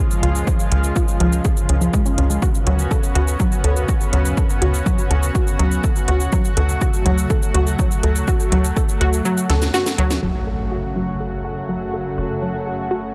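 A tight, sawtooth-edged sequencer bass drives this dark, dramatic melodic techno excerpt at 123 BPM in F# harmonic minor, pumping beneath a punchy overdriven kick, a house kit of cracking snare, metallic hats and shaker, a detuned unison pluck arpeggio carrying analog delay and a filter sweep, lush chorused pad chords and a very quiet swarming drone, before the kick drops out at 9.3 seconds for a drum fill, an electronic impact hits at 10.2 seconds as the harmony settles on F# minor, and a deep, moody ambient pad surfaces at 11.8 seconds in a dry, gritty mix.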